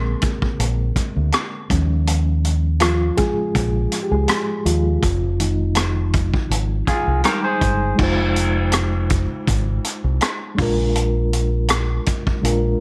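A reedy, mellow electric piano with fast tremolo opens this short cut from a lush 1970s-style soul piece in F minor, carrying the lead through the first 8 seconds over a round, punchy fingered bass and an up-front vintage kit of tight kick, hi-hat, rim clicks and dark crash cymbal. The smooth, silky groove sits at 81 BPM with a gentle sixteenth-note swing, moving through Bb7, Eb9sus4 and Fm7, while a twangy, slightly broken-up electric guitar riff cuts in briefly from 6.9 seconds. Studio reverb lends the sound a sense of space.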